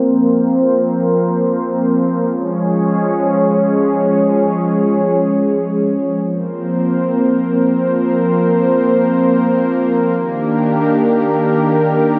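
A warm analog synth pad carries this short hip hop fragment alone from start to finish, its detuned sawtooth tone smooth and gently warbling with a vintage character. Floating in free time, the mood is dreamy and suspended, with each chord arriving on a slow attack and sustaining into the next. The harmony moves from Bbsus2 to Db at 2.3 seconds, back to Bbsus2, and settles on Ebmaj7 at 10.2 seconds. A filter sweep runs across the pad throughout, while chorus and tape echo add shimmer and trailing repeats. The pad sits up front in a lush hall reverb with a long tail, and the piece is cut from a longer work, ending at 12.2 seconds.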